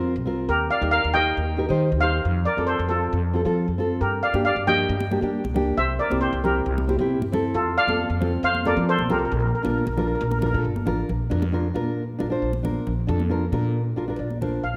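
A shimmering, mellow steel pan carries the melody over thumb-plucked classical nylon-string guitar and a woody, growly pizzicato upright bass in this carefree, bouncy calypso fragment set in a moderate concert-hall space, with bright, high-tuned congas joining in the background at 4.3 seconds, and the pan dropping out at 10.5 seconds before a brief guitar fill at 14.0 seconds.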